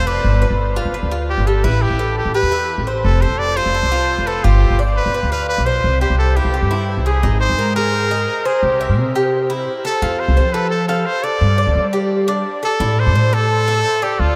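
A straight 4/4 pulse at 172 BPM drives this sunny, danceable Cuban son and guajira excerpt in C major, where a brilliant, punchy trumpet carries the melody with vibrato up front, a bright, metallic tres picks arpeggios on its doubled strings, and a woody, thumpy pizzicato upright bass anchors the low end, all bathed in a huge, wet reverb that evokes a vast, echoing space, with the harmony turning to an Abadd9 at 7.2 s as the second section begins.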